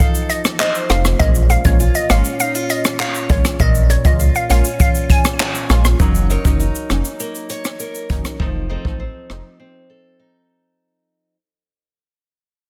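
Bouncy and tough, this dancehall cut moves at 100 BPM in Bb minor, with a glassy, crystalline wavetable pluck carrying the melody through a chorus and delay over dark, picked steel-string acoustic guitar arpeggios. A jazz brush kit with a boomy kick, handclaps, hi-hat, rim click and shaker sits up front, while a deep, full sub bass, a punchy, detuned synth brass stab with chorus and phaser, and very quiet, high-tuned bongos join at 0.9 seconds. The small-room mix is densely limited, fades out from 6.0 seconds over Gb6 and F7 chords, and breaks at 9.6 seconds, leaving the guitar to ring until 11.4 seconds.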